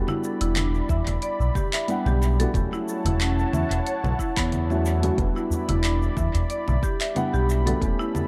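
This hypnotic organic downtempo excerpt opens on a felt-muted upright piano, soft and intimate, alongside a detuned analog pad with a warbling chorus sheen, both breathing with sidechain pumping over Em7 moving to F#m7/E and back in E dorian. A smooth gliding synth bass sits up front with portamento and vibrato, while a woody marimba on padauk bars spins arpeggios through an analog delay from 0.1 seconds. A deep house kit of congas, handclaps, shaker and dark hats joins at the same moment, and a deep, layered electronic kick enters at 0.9 seconds, setting a 91 BPM pulse with a light 16th-note swing. Near the close, a very quiet quartz singing bowl rings a pure, slowly beating B4 from 5.2 seconds, and a small, close, dry udu adds percussion from 5.5 seconds. The echo-heavy mix carries light reverb and small-room ambience, giving the loop a gently enveloping, warm glow.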